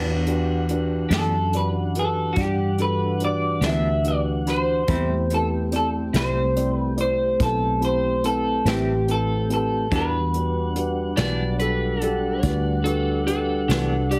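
Heavily compressed and lightly reverberant, this excerpt has the boxed-in sound of an old radio broadcast, carrying a smoky, mournful slow blues in 12/8 at 48 BPM with a straight feel, in E minor and tuned slightly flat. A mellow, flute-like tonewheel organ holds soft sustained chords through a slow rotary speaker, while a dark, boxy grand piano with plate reverb and a clean electric guitar with harmonic tremolo fill out the accompaniment over Em7 and Am7. A round, punchy, foam-muted electric bass sits up front, and a jazz kit played with brushes brings hi-hat, a medium-tuned snare and a boomy kick. From 1.1 seconds, the lead line comes from a bright, twangy, slightly broken-up electric guitar through a small old amp, picked and up front, bathed in lush chorus and plate reverb. Near the close, at 11.2 seconds, a dusky slide guitar adds a second line with plate reverb and analog delay.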